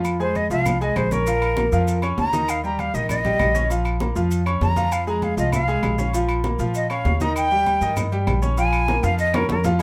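A clear baby grand piano, a dark, woody pizzicato upright bass, ringing agogo bells and timbales, and grainy maracas open this danceable, passionate salsa fragment at 197 BPM, joined by woody claves and bright, damped, low-tuned congas, while a breathy concert flute with vibrato and tongued notes carries an unsteady solo up front over an Fm, Bbm and Eb progression in a small room, before a drum fill arrives at 9.0 seconds.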